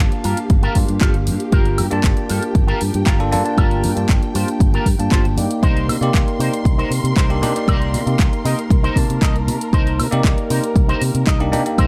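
A dry nu-disco excerpt with a sensual, cosmic mood, built on a steady 4/4 groove that moves from Gm7 to Cm7 at 5.6 seconds. A bell-like tine electric piano carries the accompaniment through phaser and slapback echo, joined by lush, dark symphonic strings holding sustained chords, and a fingered electric bass; all three pump against the sidechain. An overdriven, punchy electronic kick sits up front from 0.5 seconds, while a house kit of bright hats, handclaps and woodblock plays alongside a twangy envelope-filtered electric guitar riff coloured by analog chorus and slapback echo.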